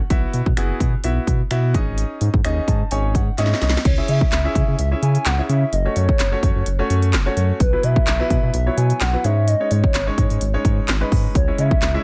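Set in a digital ambience, this energetic, bittersweet dance-pop cut from a longer piece runs at 128 BPM in C# minor, with a clear baby grand piano and a round, deep analog bass both pumping under sidechain from the start, alongside a punchy, up-front house drum kit of cracking snare, crisp hats, handclaps, finger snaps and crash cymbal. A piano fill and a drum fill lead into the hollow, woody clarinet-like synth lead, which enters at 3.9 seconds carrying a mellow melody coloured by chorus, vibrato and digital delay. Beneath it the harmony moves through suspended chords and C# minor and F# minor.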